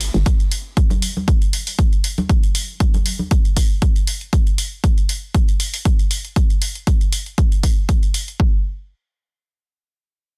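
Deep house at 118 BPM with a 16th-note swing, this hypnotic, late-night fragment of a longer piece sets a tape-warm analog electronic hi-hat against a punchy, up-front kick that joins at 0.3 seconds, while bright, thin-skinned congas struck with hard hands sit close in a small room from 0.9 to 3.3 seconds, all within a dense, heavily limited modern master.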